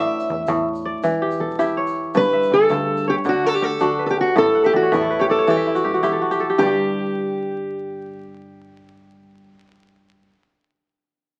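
A fingerpicked steel-string acoustic guitar with a boxy, parlour tone carries the melody up front alongside a ringing, crisp kora spinning arpeggios, in a hypnotic, flowing piece of West African string and xylophone music at 108 BPM in 12/8, with a punchy sawtooth bass plucking low in the background, a grainy egg shaker distant from 0.2 to 6.8 s, a kora fill at 4.5 s, chords moving from A5 through Em, G and D before dropping away at 6.6 s, all heard through moderate studio reverb and the crackle of a very old 78 rpm record.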